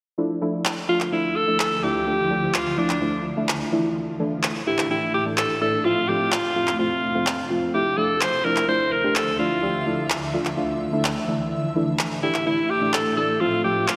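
Electronic handclaps drive a straight dance-pop pulse, layered and up front with a slapback echo, in this bittersweet yet energetic excerpt cut from a longer piece. Beneath them, a deep, mellow chord stab with a detuned, warbling vintage tone and fast, decaying attack carries the accompaniment, thickened by chorus and slapback echo. A granular cloud pad enters at 1.1 seconds, blurred and evolving with a slow attack and long release, its bright shimmer spreading chords across a broad range under its own built-in reverb. At 0.9 seconds an edgy alto saxophone takes the melody, forceful and punchy with light vibrato, sitting up front in the mix with slapback echo and delay. The harmony cycles through Dmadd9, Asus4 and F, and a lush hall reverb gives the whole mix a big arena sound.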